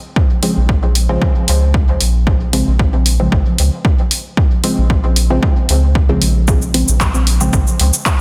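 A lightly swung 4/4 dub techno groove sets a nocturnal, meditative mood in this short fragment of a longer piece: a muted, sawtooth chord stab, pumping through chorus, phaser and dub echo, opens at 0.0 seconds; a punchy, overdriven electronic kick and an up-front deep house kit of handclaps, hi-hat and shaker follow moments later; and a round, soft sub bass carries the low end from 0.6 seconds, all set in light digital ambience within a dense, heavily limited master.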